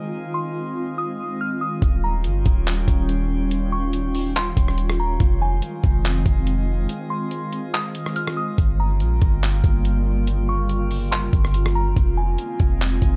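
A dark, warm mix opens this melancholic, ethereal cloud-rap excerpt in F minor at 142 BPM in a half-time feel, where a glassy FM pad with ensemble chorus, phaser and sidechain pumping holds sustained chords under a calm drifting glass-harmonics texture and a delicate, tinkling synth tine bell melody with chorus and delay, while a deep, boomy 808-style bass and a muffled, pitched-down, sampler-style drum kit with thumpy kick, hi-hat, handclaps and rim click arrive up front at 1.8 seconds after a filter sweep, with a break at 6.9 seconds over chords moving from Fm7 through Eb9 and Gm7b5.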